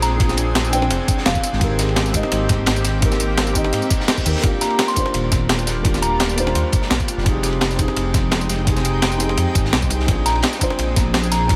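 Opening on a soft, pure FM synth bell melody over a mellow, felt-muted upright piano with delay, a shimmering ambient pad pumping in the background and a deep, rumbling detuned saw bass, this uplifting, lush liquid drum and bass excerpt at 170 BPM in Eb major moves through Bb9, Abmaj9, Ebmaj7 and Fm9 chords, with an overdriven, gritty sampler-style breakbeat kit of hi-hat, snare and tambourine up front, a thumpy, compressed electronic kick entering at 0.2 seconds, a dark, crunchy acoustic breakbeat kit of ride and snare further back, a very quiet reverse cymbal at 3.9 seconds and the bell returning at 4.6 seconds.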